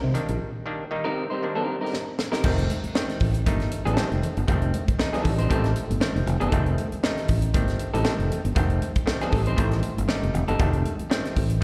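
A growly, up-front fingered electric bass and soft-handed, distant congas open this cool, driving funk excerpt at 118 BPM in 4/4, with a lightly swung sixteenth-note feel, and a tight funk drum kit with a high-tuned snare and tight kick arrives almost at once alongside a twangy, stringy clav whose stabs carry a slapback echo. A break runs from 0.4 seconds, and an electric guitar through a small old amp joins during it, picked, compressed and slightly broken-up, adding its own slapback-echoed accompaniment. A drum fill closes the break as the harmony moves from Cm7 to F9 at 2.4 seconds, where the groove settles into its second section with crash, hi-hat, kick and snare all in play. Near the end the clav takes a fill starting at 9.1 seconds. The whole band sounds like a live gig heard through the venue's PA, set in the reverb of a recital hall.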